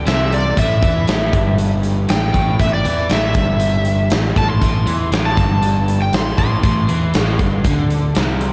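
A straight 4/4 pulse from a big, acoustic rock kit drives this smoky, gritty blues rock and southern rock excerpt, its tight kick, medium-tuned snare and hi-hat sitting up front with a rolled-off top. A crunchy, double-tracked overdriven guitar picks a low riff with slapback echo, and a growly, punchy fuzz bass adds weight underneath. Over them, a bright slide guitar played with fingerpicks carries the melody until 7.9 seconds, all set in a lush hall that gives the whole track a big arena sound.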